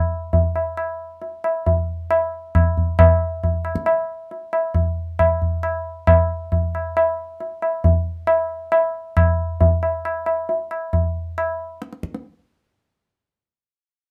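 A low-tuned tabla with a short ring carries this radiant, meditative Indian classical fragment, entering at 0.3 seconds and playing in free time until 12.3 seconds. The drum sits close and up front, heard acoustically in a small room with a moderate touch of reverb, before the cut from the longer piece closes at 14.1 seconds.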